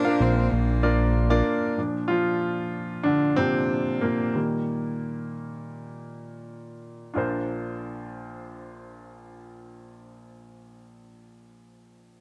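A straight 4/4 pulse carries this anthemic, uplifting piano-driven pop excerpt, where a close, focused solo cello, bowed with vibrato and analog delay, and a fat, saturated, detuned sawtooth bass sound only briefly at the opening, finishing by 1.4 s, before the polished, present baby grand piano plays alone from 1.8 s to 7.2 s as the music slows, moving from Bbadd9 to Eb and back, heard in a small room on cassette tape.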